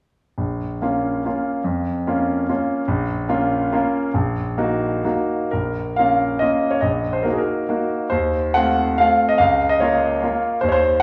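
Capricious and nostalgic, this short passage cut from a longer romantic classical piece is a triple-time dance in Bb minor for solo piano, built on dotted rhythms and moving in 3/4 with a rubato feel. The tempo flexes between 116 and 159 BPM. A clear concert grand carries everything, sounding natural and up front with a deep bass, ranging from Bb1 to Gb5 as it plays from 0.4 to 11.0 seconds. The opening part rests on Bb minor and Eb minor over a Bb bass, and a second part beginning at 5.5 seconds revisits those harmonies before moving through F7 over Eb and closing on Bb minor over Db. A reverberant recital hall with a 1.5-second decay surrounds the instrument, blended with studio ambience.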